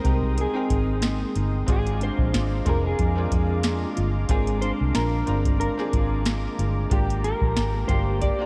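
Sunny and hazy, this short indie and bedroom pop excerpt drifts at 92 BPM in 4/4 with a light 16th-note swing, its chords moving from Abmaj7 to Bb7 and settling on Bb13 at 6.9 seconds. A mellow, dark electric guitar carries the melody through lush chorus and analog delay, over a bright, woody upright piano with audible action noise and a worn cassette-tape tint, a fingerpicked steel-string acoustic guitar sitting in the background with subtle chorus and vibrato, and a smooth, warbling analog pad holding sustained chords. Underneath, a round, foam-muted fingered electric bass sits up front beside a soft vintage rhythm box with deep kick, crisp snare and metallic hi-hats, all bathed in a dreamy, reverb-soaked hall.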